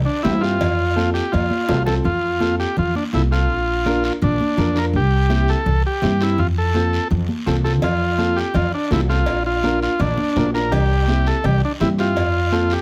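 A growly, woody pizzicato upright bass opens this sunny, danceable cumbia excerpt at 166 BPM in F major, joined almost at once by an up-front, buzzy combo organ melody with light vibrato and plate reverb, a brilliant, slightly detuned upright piano, high-tuned congas and a raspy guiro, while distant, ringing timbales and cowbell sound at the start, a drum fill leads into the second section at 2.1 seconds, and the timbales and cowbell return at 7.8 seconds over chords moving through C, F and Bb.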